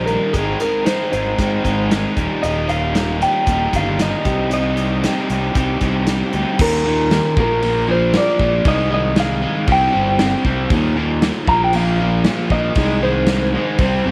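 Indie rock at 116 BPM in Eb major, wistful yet carefree, where a slightly broken-up lead guitar through a small old amp carries the melody with slapback echo over a bright, double-tracked crunchy riff guitar up front, a punchy fuzz-driven fingered bass, and a big acoustic drum kit with bright cymbals and a punchy kick, all set in light studio reverb as the chords move from Ab through Ebadd9 and Cm before shifting at 6.6 seconds into a section of power chords, Bb and Ab/C.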